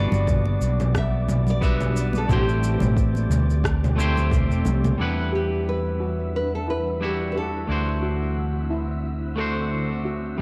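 A lightly swung 16th-note groove in 4/4 carries this wistful sunset chillout excerpt, built on a tape-warm, low-pass filtered deep house kit of rim click, shaker and toms, with very quiet, close congas and a soft, overdriven electronic kick under the first half. A fingerpicked nylon-string guitar sings the full-bodied melody through tape echo, while a bright, clean picked electric guitar, also echoed, plays the accompaniment, and a round, punchy fretless bass sits up front with tube saturation. Behind them, a shimmering pad with chorus, phaser and octave-up granular shimmer holds sustained chords, and an airy, breathy wind-like noise texture drifts in the background. The harmony moves from Gmaj7 to Am7, then after a drum fill ending at 5.0 seconds shifts to Em9 and D9 as the congas drop out, the kick having already fallen away at 4.5 seconds. A metallic steel pan enters at 5.3 seconds with low-pass filtered arpeggios and a filter sweep, and the nylon guitar stops at 9.3 seconds, all within a dark, lightly reverberant mix.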